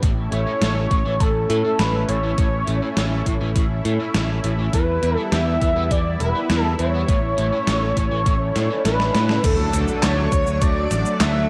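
A hazy, cassette-worn home recording with a modest spring reverb and digital ambience opens this nostalgic, dreamy synthwave excerpt at 102 BPM in a straight 4/4. A silky, evolving analog string pad holds sustained chords through ensemble chorus, sidechain pumping and shimmer reverb. Underneath, a bright, growly picked electric bass sits up front with tube saturation. A thumpy, overdriven electronic kick and a gated 80s drum machine with snare, handclaps, hi-hat, shaker and crash drive the beat, the drum machine steeped in gated reverb. A thick, nasal unison lead carries the melody from 0.3 s with vibrato, lush chorus and analog delay, while a biting overdriven guitar riffs in the background with tape echo until 9.4 s, through a drum fill that starts at 8.6 s. At 9.4 s the chords move from A and Em to D as a very quiet swell, rising from 8.8 s, lands its impact. A shimmering string-machine violin line slips in behind, and a slightly broken-up, lo-fi guitar through a small old amp adds faint arpeggios.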